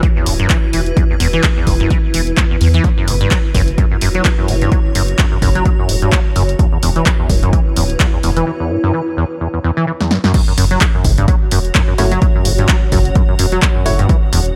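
Trippy and gritty, this acid house excerpt runs at 128 BPM in 4/4 with a 16th-note swing, built on a rubbery, resonant acid bass riff with tube saturation, chorus and delay, a round, wave-folded analog bass under it, an overdriven, punchy kick up front and a dry analog drum machine supplying snare, handclaps, hi-hat and crash. A granular cloud pad hovers above, blurred and bright with built-in reverb and sidechain pumping, while the harmony moves from E7(no3) to F#7(no3) and E5 before a break and drum fill lead into the drop at 10.3 seconds on F#m7. At 12.0 seconds a hollow, percussive organ stab treated with chorus, phaser and delay enters briefly, stopping at 14.0 seconds.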